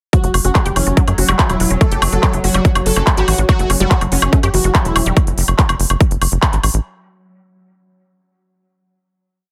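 A punchy, overdriven electronic kick drives this alien, intense psychedelic trance piece in a four-on-the-floor pattern, joined up front by a crisp, overdriven dance drum kit of handclaps, hi-hats and woodblock and a tight, nasal sequencer bass rolling in sixteenth notes. A thick, bold unison lead with vibrato, phaser and dub echo repeats a riff melody, while a lush unison pluck plays an accented acid line in a 12-step loop that drifts against the bar. In the background, a pulsing gated drone enters at 0.4 seconds and a deep, moody, wave-folded ambient pad with slowly shifting chords arrives at 1.4 seconds, both breathing with sidechain pumping under a light reverb.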